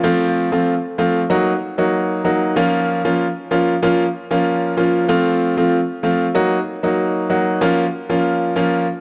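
A clear, smooth concert grand piano plays alone from the start until 8.9 s in this hypnotic, sultry dancehall fragment at 95 BPM in Bb harmonic minor, its deep-bass, vintage tone sitting up front with an analog delay as it cycles through F, Ebm and Bbm, shifting into a brief new section at 7.6 s, all in a gritty, dry hardware recording with light reverb and small-room ambience.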